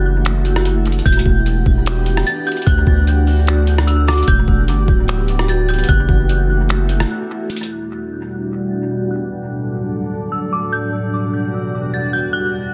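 A deep, sine-toned 808-style bass sits up front in this ethereal, spacious excerpt of atmospheric cloud-rap, its long notes striking quickly and decaying until it drops out at 7.1 seconds. Beneath a half-time feel, a compressed, pitched-down trip hop sampler-style kit brings gritty finger snaps, hi-hat, rim click and a thumpy, tape-tinged kick from just after the start until 7.7 seconds. A glassy FM pad holds sustained chords throughout, swelling in slowly and lingering through ensemble chorus, built-in reverb, sidechain pumping and a low-pass filter as the harmony drifts among minor seventh and major chords. From 1.1 seconds an eerie, inharmonic detuned synth bell carries the melody high above, mellowed by chorus, phaser, a low-pass filter and dub echo. After a brief break, a filter sweep carries the pad and bell through the closing stretch of this echo-heavy, digitally ambient mix.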